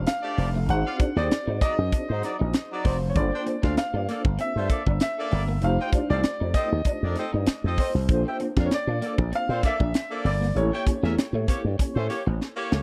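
A growly, punchy slap bass with an envelope filter sits up front in this polished 1980s jazz-funk pop excerpt, alongside a tight funk drum kit with a high-tuned snare that closes on a fill at 12.4 seconds. A baby grand piano with an open tone and long sustain carries the urban, bittersweet melody until 12.4 seconds, over a worn, slightly out-of-tune tine electric piano with tremolo and chorus and a picked, slightly broken-up electric guitar riff tucked in the background. A horn section with light vibrato and tape echo adds a second line, and the lightly swung groove is captured in a dry, close 1970s-style studio sound.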